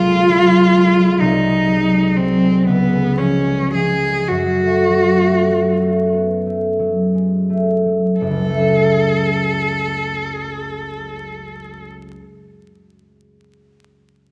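A wet scoring-stage reverb with a 1.9 second decay surrounds this recording, and a layer of vinyl crackle sits beneath it. It is a yearning, elegiac romantic classical duo for cello and harp in F# minor and 6/8, moving at a rubato 27-44 BPM in dotted quarters, and it is cut from a longer piece. A single bowed cello carries the melody between B3 and A4, placed up front with a warm, expressive tone shaded by vibrato and portamento, though its sound also has a distant quality. The concert harp accompanies from F#1 to F#4, also up front, its bright, thumb-plucked acoustic strings ringing into the space. The opening section slows down across its length, moving through G#7/B# and C# to F#m before a second section begins at 8.2 s. The cello stops at 11.8 s, leaving the harp to ring on alone until 12.3 s.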